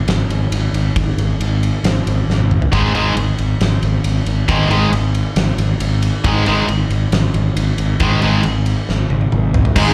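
Aggressive, heavy hard rock captured live through a club PA, where a growly, fuzz-drenched fingered bass and a big, dark drum kit with a fat snare and punchy kick drive from the start, a drum fill at 2.3 seconds ushers in two picked distorted guitars playing riffs (one high-gain and up front, the other tight and in the background, both with slapback echo), and a silky, phased analog string pad appears only at 9.8 seconds as this excerpt cuts off.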